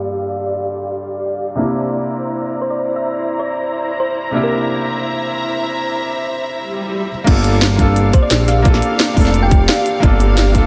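A rolling, dreamy liquid drum and bass excerpt at 174 BPM in G dorian opens with a soft, felt-muted upright piano carrying delay and audible action noise alongside a dark, woody string section whose sustained chords pump against the sidechain under a filter sweep, moving from Gm7 to C9. A round, tine-like synth pluck with chorus and diffuse ambient delay carries the melody from 2.6 s, and an electronic swell leads into the drop at 7.3 s, where a tight, tape-warm kick, a cracking snare with filtered hats and crash, and an up-front, smooth synth bass enter. The whole mix sits in a lush hall reverb with a low-pass filter.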